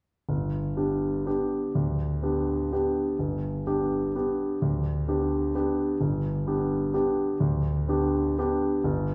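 Sparkling and playful, this short classical piano waltz excerpt in G major moves in 3/4 at 126 BPM with an uneven, rubato lilt, as a warm, natural grand piano plays solo from 0.3 to 9.1 seconds, sitting up front yet bathed in a wet recital-hall reverb heard from further back in the room.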